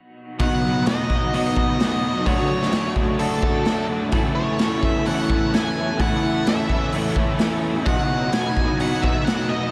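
Shoegaze and dream pop rock in a straight 4/4, hazy and wistful, cut from a longer piece, with every part entering together at 0.4 seconds over chords moving from B through Dmaj7 and Aadd9 back to B. A raw garage drum kit sits up front with a punchy kick, a medium-tuned snare and hi-hat, its gritty, saturated sound pumping in a small room with a rolled-off top. Two crunchy overdriven guitars play the riff, one up front with ensemble chorus and one darker in the background with reverse reverb, while a very quiet, lo-fi electric guitar through a small old amp picks compressed, slightly broken-up arpeggios and an octave-fuzz lead carries the melody through distortion and analog delay, all soaked in a huge ambient reverb.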